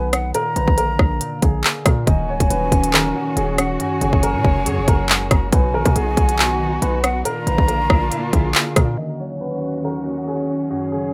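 Hard-clipped kicks and crisp hats from an up-front drill kit drive this tense, dark half-time hip hop fragment, joined by handclaps, rim clicks and a punchy, heavy 808-style bass with a noisy edge until about 9.0 s. A dark, long-sustaining baby grand carries the melody through a low-pass filter and delay, while an airy, hollow flute adds a delayed second line until 8.5 s and a ringing fingerpicked harp supplies accompaniment. Bowed strings with vibrato and portamento enter at 2.1 s with smooth sustained chords, and a filter sweep closes the passage in a rough, roomy home-demo sound.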